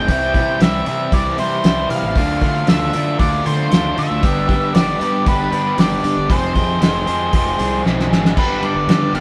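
A straight 4/4 pulse at 116 BPM drives this carefree yet wistful indie rock passage, cut from a longer piece, as a cloth-damped, thuddy drum kit with a fat snare, tight kick and dark cymbals enters at 0.1 seconds and sits up front in a small-room sound. A double-tracked, compressed overdriven electric guitar plays the riff over C, Dm7, G and Fm, while a round, fuzzed picked electric bass anchors the low end and an octave-fuzz lead guitar carries a distorted melody. A drum fill at 7.9 seconds leads the band, playing live together in one room with moderate reverb, back to G at 8.4 seconds.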